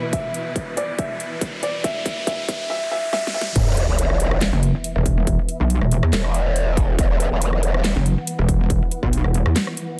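A swung, half-time dubstep groove drives this heavy, aggressive fragment of a longer piece. It opens on a build-up where a soft, felt-muted upright piano, its action noise audible through tape echo, carries the melody for the first 3.5 seconds. Beneath it, clear bowed studio strings pump under sidechain and a low-pass filter, while a riser, a filter sweep and drum fills from the dubstep kit (huge snare, metallic hats, claps, rim clicks and crash) build with a distorted electronic kick. At 3.6 seconds the drop lands with an impact and sub drop as an up-front growl bass with a formant filter enters, joined at 4.5 seconds by a detuned, pulsing pluck wobble bass, both saturated and chorused, all inside a dense, heavily limited master with light digital reverb.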